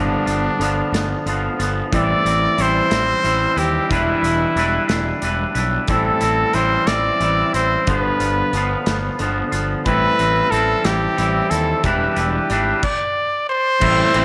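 Bittersweet and cool, this indie rock passage in A minor moves at 60 BPM in a straight 6/8, with an up-front, pop-style trumpet singing the melody with light vibrato over a clean, twangy picked electric guitar riff, a growly fuzz-overdriven fingered bass, and a loose acoustic drum kit with a tight kick and medium-tuned snare that enters at 0.3 s, set in a small room with light reverb as the chords cycle through G7, Am7 and Em7.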